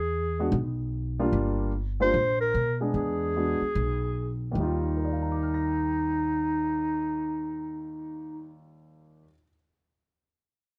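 Small-group swing and bop jazz at a relaxed, playful 149 BPM in Eb major, this short cut features a breathy clarinet soloing up front with subtone, light vibrato, scooped notes and plate reverb over a woody, thumpy pizzicato upright bass and a grand piano accompaniment entering at 0.4 seconds, moving through E7 and Gm7 before settling on Ebmaj9 at 4.6 seconds.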